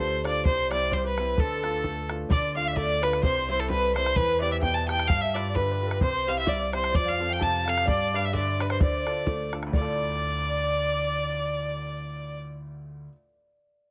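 A Celtic polka in 2/4 opens with fiddle, concert harp, wooden flute, upright piano, upright bass and bodhran sounding together from the first beat, in D dorian at 129 BPM with a swung eighth-note lilt and a wild, driving mood. The clear, focused fiddle carries the melody up front, a single bowed line with light vibrato and a slightly boxy edge. Behind it, the airy wooden flute, tongued with a straight tone, and the thumb-plucked, ringing harp add second lines in the background. The bright, intimate upright piano, woody and slightly detuned with audible action noise, supplies accompaniment over chords moving from C and Dm through Em, G7 and F. Pizzicato upright bass with steel strings gives a warm, acoustic foundation, and the open, boomy bodhran sits close and dry until it stops at 10.0 seconds. Plate reverb colours the fiddle, flute, harp and piano within a moderate studio ambience on a home cassette recording, and after fiddle and flute end at 12.4 seconds, harp, piano and bass carry on to 13.1 seconds, where the passage is cut from the longer piece.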